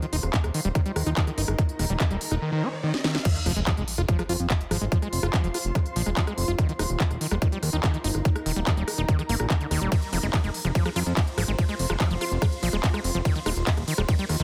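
Psychedelic trance at 144 BPM with a driving, hypnotic pull, cut from a longer piece, where a riser and sub drop in the background build from 1.7 seconds into a drum fill and an impact as the drop lands at 3.3 seconds. A tight, up-front electronic kick anchors a techno kit of cracking snare, smooth hats, handclaps, rim clicks, ride and crash with an overdriven edge, while a fat, saturated analog bass with filter sweeps sits beneath a squelchy, gritty acid riff soaked in distortion, tape grit and digital delay. Behind them a cloudy, detuned granular pad drifts in the background with its own reverb, the pad and acid line both carrying sidechain pumping, all in a dense, heavily limited modern master that stays fairly dry.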